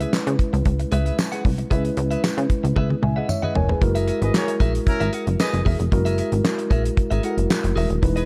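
Slick and funky, this early-eighties boogie funk excerpt rides a dry, damped drum kit with a fat snare, tight kick, hi-hat, handclaps and toms, alongside a punchy, plucky analog bass sitting up front. A mellow tine electric piano holds down C#m7 chords while a clean, scooped electric guitar plays a compressed riff with subtle chorus, a jingly tambourine sits in the background, and a drum fill and electric piano fill carry the groove into F#9 at 3.8 seconds. A smooth-topped horn section with light vibrato adds a brief second line from 4.2 to 5.6 seconds, all within a dark, warm studio sound.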